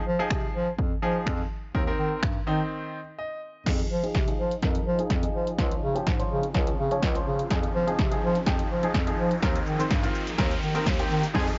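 A punchy analog drum machine sits up front in this dance-pop excerpt, its dry kick and snare leading a straight 4/4 beat joined by hi-hat, shaker, finger snaps and crash cymbal. Underneath, a breathy bass clarinet carries the bass line in a classical style, while a bright, brilliant grand piano with short sustain plays accompaniment; both pump with sidechain, and the piano also runs through a low-pass filter. The mood is bittersweet yet energetic, and after a brief break where the piano takes a fill, a long build-up begins at 3.7 seconds with a drum fill and a filter sweep, followed by a very quiet, ethereal shimmering pad from 4.6 seconds and a background riser from 5.9 seconds. A clean, picked twelve-string electric guitar flickers in at 11.3 seconds with subtle chorus, tucked into the background. The recording has little reverb and the character of worn cassette tape, with warbly pitch drift and a dulled top end.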